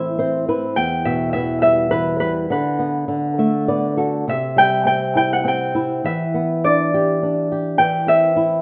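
In a straight 3/4 at 103 BPM, this brief, innocent and sleepy lullaby, cut from a longer piece, sways gently through A minor, E minor, D6 and C, tuned slightly low to A4 = 439 Hz. Up front, a ringing Celtic harp carries the melody between B4 and G5, while a warm flamenco guitar supplies the accompaniment across a broad span from E2 to E5, both played with the thumb. The guitar adds short fills at the very start and again around 3.1 seconds, and a moderate recital hall reverb gives the pair a soft, spacious glow.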